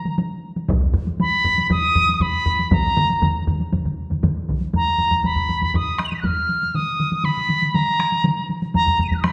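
Ceremonial and driving, this short cut from a longer Japanese traditional piece sets a pure, bright piccolo up front over a taiko drum ensemble in a straight 4/4. The piccolo carries the melody high in its range with vibrato and tongued, expressive phrasing, while a solo taiko and several ensemble drum parts struck with heavy sticks sound close, most of them dry, with one ensemble part dropping out at 4.6 s. A reverberant recital-hall space surrounds the performance, and the music moves into a new section at 4.7 s.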